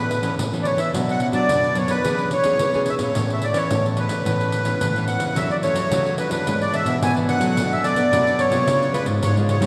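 Bathed in a long, cathedral-like reverb, this festive, lively samba-choro excerpt in A major at 109 BPM sets a sweet, reedy accordion with light tremolo tuning up front on the melody, over one dark fingerpicked nylon-string guitar on accompaniment, another warm fingerpicked nylon-string guitar holding the bass, and a jingly, band-limited pandeiro, as the harmony moves from Aadd9 through Bm and E6 before a second passage at 5.4 seconds turns to F#m7 and closes on C#7.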